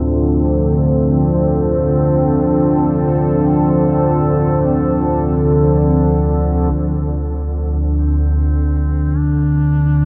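Cavernous and unsettling, this dark ambient drone in D minor drifts in free time, cut from a longer piece and bathed in a huge, wet reverb. A nasal, evolving analog drone with chorus and a deep, moody analog pad with chorus and phaser sit up front and sustain a single D minor chord throughout, while bronze carillon bells ring barely audible arpeggios until 4.0 s. A filter sweep moves across the drone from 6.7 s, and at 8.0 s a warm duduk enters with a folk-style solo melody, its vibrato and scooped notes adding a human voice to the gloom.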